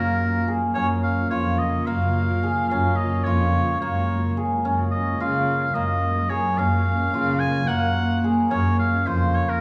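All four parts sound together from the opening moment of this hopeful yet restless chamber piece, cut from a longer work and moving in an uneven 7/8 metre with a straight feel. A warm oboe carries the solo melody in classical style with light vibrato, its tone distant and roomy even as it sits up front. Beneath it, a cimbalom rings out hammered arpeggios that shimmer with a mellow, acoustic glow. A dark cello holds the bass line, bowed sul tasto by one player with soft attacks, vibrato and an intimate, close sound. In the background, a granular cloud pad sustains blurred, evolving chords with a detuned, full-bodied haze and its own built-in reverb, while the harmony shifts between Gbmaj7 and Bbm and the whole ensemble sits in a moderate concert hall space.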